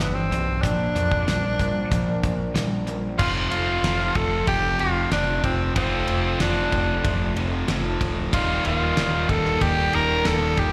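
Classic rock at 94 BPM in a sunny, driving 4/4, this excerpt from a longer piece puts a bright, raspy tenor saxophone solo up front, gritty with vibrato, slapback echo and digital delay, over a biting overdriven guitar riff with its own slapback echo and a sludgy distorted guitar riff, both set in the background, a growling, round picked electric bass, a dry, damped 70s drum kit with a fat snare and tight kick, and a very quiet picked parlour steel-string acoustic guitar, the band heard as a live gig through the venue's PA with small room and recital hall reverb while the chords move from G and Bb to F at 3.2 seconds and Eb at 8.3 seconds.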